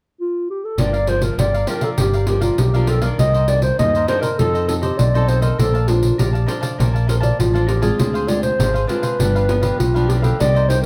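A dark, smooth-topped clarinet opens the piece at 0.2 s, playing its melody alone in a classical style before the band joins at 0.8 s. This is a short cut from a longer samba and choro performance, lively yet bittersweet. Beneath the clarinet's plate reverb, a fingerpicked nylon-string guitar adds finger squeak, while a crisp, mellow picked cavaquinho sits quietly in the background. Up front, a fingered electric bass gives a direct, amped low end, and a jingly pandeiro with a small-room sound keeps the groove moving. The harmony moves from Gm7 through Cm9, F7 and Bbmaj9 before turning to Dm7b5 and G7. The whole group sounds a little distant, set back in a moderately reverberant studio.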